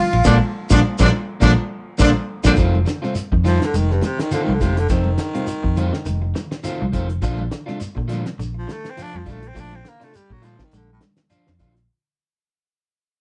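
A raspy, gritty baritone saxophone takes the solo from 3.5 seconds in this hypnotic, joyful afrobeat cut at 103 BPM, after a breathy, whispered tenor saxophone and a distant trumpet with vibrato open with a brief band accent over a Bb chord. Underneath, a round, up-front fingered bass and a cloth-damped, thuddy drum kit with a fat snare and dark cymbals drive a swung sixteenth-note groove, joined by a bright clean guitar playing arpeggios through spring reverb and a slightly broken-up guitar playing stabs. Grainy shekere and soft-handed congas, the congas set in the background, fill out a live-room sound that moves from F7 to Bbmaj7 as the music fades out from 2.6 seconds.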